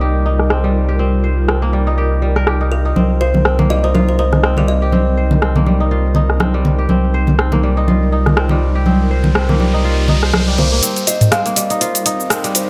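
A deep, round sine sub bass sits up front in this warm, spiritual afro house excerpt at 122 BPM, alongside an electronic drum kit with metallic hats, cabasa, rim clicks and toms, a crisp fingerpicked kora with 12-bit sampler grit and dub echo, and an ethereal, detuned pad holding sustained chords from Ebadd9/C to Cm7, while a woody kalimba melody with dub echo appears at 2.7 s, thick-skinned, damped congas enter at 3.0 s, and an electronic riser builds from 9.0 s into the closing section.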